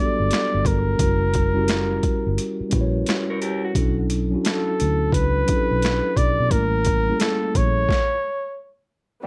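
A dark, close production with little reverb frames this sensual, soulful neo-soul R&B excerpt at 87 BPM, swung on the sixteenths and moving through Gmaj7, F#7b9, Bm11 and A7b9. An up-front flugelhorn sings the jazz-style melody with light vibrato, scooped notes and slapback echo over a mellow tine electric piano, a round, foam-muted fingered bass, and a gritty, pitched-down boom bap kit with a thumpy kick, high-tuned snare, hi-hat and finger snaps. A lo-fi, slightly broken-up guitar adds a brief second line from 3.3 to 4.0 seconds, and the excerpt reaches a stop at 7.9 seconds.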